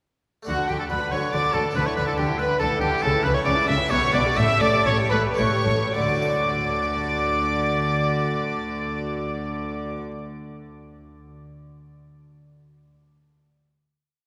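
A bright, present oboe sits up front in this short, lively and festive baroque-style concerto movement in D major and 3/4, doubling the tune at the octave over a rich, gut-string violin section that carries the melody in the background while a close second violin section also doubles it. Beneath them, dark violas rock a two-note figure and sustain chords, dark cellos repeat and hold bass notes with the double bass section doubling that line, and a single-strung harpsichord adds plucked, rolled chords from the back. The tempo moves between 104 and 142 BPM and slows from 2.4 seconds into a long final D chord at 5.9 seconds, all bathed in a wet cathedral reverb.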